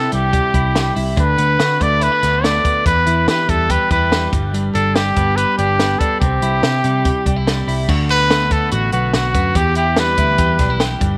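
A punchy, up-front trumpet carries a vibrato-laced pop melody over clean, bright twelve-string electric guitar arpeggios with a warbly pitch drift, a round, foam-muted picked bass and a dry compact cocktail kit with dark cymbals and a high-tuned snare, giving this fragment of jangly indie pop a nostalgic, sunny glow in light studio reverb.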